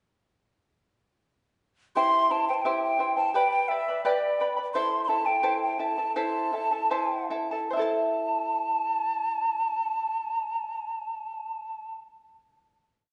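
A hollow, airy cane quena and a shimmering charango enter together at 2.0 seconds in this short, melancholic and earthy Andean folk piece in A minor, moving at 70-86 BPM in a straight 2/4. The up-front quena carries a motif-based melody in period phrases with vibrato, tongued notes and a breathy chiff, while the charango's double strings, some doubled at the octave, are fingerpicked and strummed in open chord shapes through C, G and A minor. The tempo slows from 4.7 to 7.7 seconds into a final chord that rings out in a resonant recital-hall reverb.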